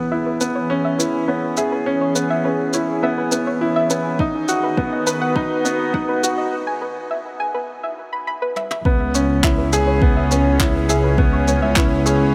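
Bathed in a huge ambient reverb with its low end thinned by a high-pass filter, this intimate, hypnotic piano and strings electronica excerpt moves at 103 BPM in 4/4 with a straight feel, in C# minor. A worn, woody, slightly detuned upright piano sits up front with a riff and long sustain through tape echo. A lush, thick sawtooth pad holds chords with chorus, phaser and sidechain pumping, while a soft, round pluck with a dark, decaying edge plays arpeggios above. Brushed jazz drums with handclaps, shaker and toms carry the build-up as a filter sweep plays on an analog synth pad, a deep, tape-warm electronic kick joins at 4.2 seconds, and a break arrives at 6.5 seconds. After a drum fill, the drop lands at 8.9 seconds with a bowed symphonic double bass section, focused and smooth-topped with vibrato and tube saturation, holding a low C#2 under the C#m7 chord.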